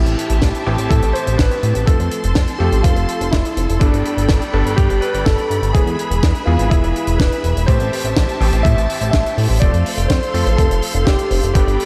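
A steady, straight 4/4 italo disco pulse at 124 BPM is driven by an overdriven, thumpy electronic kick and a tight funk kit of hi-hat and high-tuned snare, with a glossy, nasal chorused synth bass sitting up front under a bittersweet A minor progression of Am7, F, Gadd9 and E. A dark, worn baby grand piano carries the melody with delay, while a bright electric grand adds clangy, short stabs with delay in the background, and a distant, lush string section holds smooth sustained chords with vibrato. The melodramatic mix is soaked in a dreamy hall reverb, and this excerpt is cut from a longer piece.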